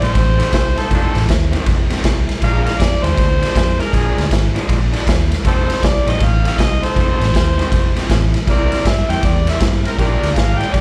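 Swaggering and rollicking, this electric blues shuffle in F mixolydian swings at 159 BPM as a gritty, overdriven harmonica with tongue slaps and light vibrato leads over a lo-fi picked guitar riff, a round, foam-muted fingered bass and a saturated, up-front drum kit with punchy kick, snare and ride in a pumping stone room, while a brilliant, tight horn section adds background stabs from 0.8 seconds, all heard live through a club PA across a short section cut from a longer piece moving through F7, Bb7 and C7.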